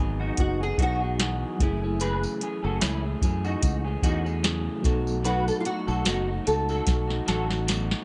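Mellow and wistful, this indie pop and bedroom pop excerpt moves at an easy 74 BPM in 4/4 with a gentle sixteenth-note swing, set in F# dorian and tuned slightly low. A soft vintage rhythm box sits up front with a deep kick, crisp snare and metallic hats, closing with a fill from 6.9 seconds, while a punchy fingered electric bass anchors the low end directly beneath it. An electric guitar through a small old amp adds slightly broken-up, compressed picking with subtle chorus and warbly pitch drift, and a reedy electric piano murmurs in the background with fast tremolo and a cassette-tape character. The fingerpicked nylon-string guitar carries the melody as a solo, small in tone with audible finger squeak, treated with ensemble chorus and slapback echo, and a dark, clean semi-hollow electric guitar traces a second line with the same chorus and echo. A jingly, band-limited tambourine joins faintly at 2.0 seconds, and the whole mix rests in light digital ambience over chords moving from Emaj9 to F#m9 and on to B7.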